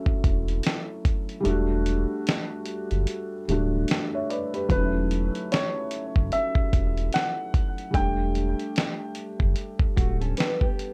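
A gritty, compressed sampler-style drum kit with a thumpy kick (briefly dropping out early on) anchors this hazy, reflective lo-fi hip hop excerpt with a swung, unhurried feel, over a round, deep sine sub bass and a soft, muted felt upright piano whose cassette-tape, low-pass-filtered chords carry audible action noise, while a woody second upright piano adds a tape-echoed, filtered melody from 4.7 seconds and a fingerpicked nylon-string guitar slips in at 10.0 seconds, all in a dark production with light reverb.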